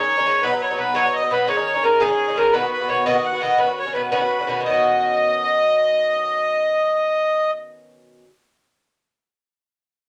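Celtic folk jig in 6/8 at 114 BPM, lively and bright, in B major with a slightly low tuning, heard as a short cut from a longer piece. A reedy, boxy accordion carries the melody up front, while a single bowed fiddle, airy and intense with light vibrato, plays a second line in the background. Both stop at 7.5 seconds. A metallic, double-strung Irish bouzouki picks the accompaniment up front until 8.3 seconds, in a wet studio ambience.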